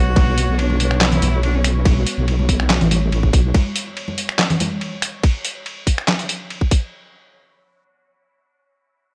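Dark and heavy, this deep dubstep drop in B minor moves at 142 BPM with a half-time feel, as an up-front, saturated wobble bass with chorus rumbles under a tight, layered electronic kick and a gritty, pitched-down trip hop sampler-style kit of snare, hi-hat, ride cymbal, handclaps and finger snaps, while vintage congas played with soft hands add acoustic colour until 4.7 seconds, a biting, distant cello with vibrato and dub echo sings briefly over a very quiet, moody ambient pad in the opening 1.9 seconds, and an airy, breathy wind-like noise texture lingers in the background until 5.3 seconds in a dry mix.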